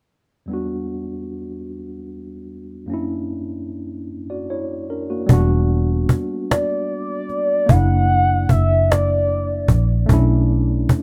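A rough home-demo mix with light reverb carries this yearning, sultry slow six-eight R&B, cut from a longer piece: a worn, slightly out-of-tune tine electric piano with light overdrive opens alone, then a dark, foam-muted fingered electric bass and a snappy, hard-handed cajon arrive up front at 5.3 seconds, and a smooth, detuned portamento lead with chorus, vibrato and tape echo glides in at 6.5 seconds.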